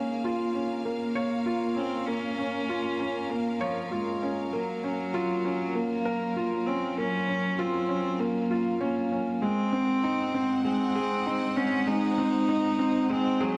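A soft, felt-muted upright piano riff sits up front in this cinematic, melancholic piano and strings electronica build-up, alongside a nasal, earthy solo cello melody with light vibrato and lush, bowed symphonic strings holding sustained chords through Bbm, Gbmaj7 and Ab7, set in a dark production with wet scoring-stage reverb.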